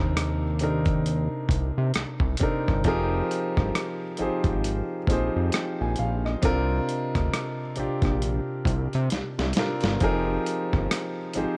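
Worn, warbling cassette tape with little reverb colours this soulful, late-night neo-soul and R&B excerpt at 67 BPM in F dorian with a swung 16th feel, as a clear, intimate grand piano with audible action noise moves through Cm9, Fm11 and C9sus4, a fat, detuned sawtooth analog bass sits up front, and a gritty, overdriven sampler-style drum kit with a thumpy kick, snare, rim click and hi-hat enters at 0.2 seconds and plays a fill at 9.1 seconds.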